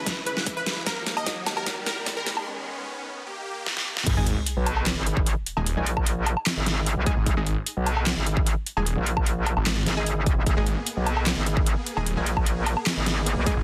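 A metallic, chorus-thickened FM wobble bass takes over at the drop at 4.1 seconds in this menacing, heavy wobble dubstep excerpt, joined a moment later by a growling, detuned saw bass. They are driven by an overdriven, punchy kick and a dubstep kit of deep snare, metallic hats, handclaps, woodblock and crash, with a bold, ring-modulated orchestra-hit-like stab sitting in the background. The opening build-up sets a phased, tape-worn unison pluck melody, huge sidechain-pumped supersaw chords with gritty 12-bit texture, and a background riser and sub drop over half-time drums, all in a dense, heavily limited master with light reverb.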